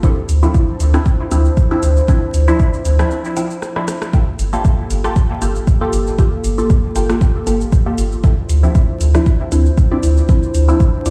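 Nocturnal and hazy, this dub techno excerpt moves with a light swing, built on an overdriven, up-front electronic kick drum, a soft analog rhythm box with metallic hats, rim clicks and shaker, and a deep, round sub bass that enters at 0.3 seconds. Above them, a dark, detuned analog pad holds lush chorused chords while a muted chord stab with phaser and dub echo plucks short, mellow hits. A second, evolving stab riff with chorus and echo slips in at 5.8 seconds in the background, and both stabs, the pad and the bass pump against the kick. A brief break at 3.1 seconds ends in a drum fill, and the whole mix sounds as if played on a big sound system in a bare room, with large studio reverb and vinyl crackle.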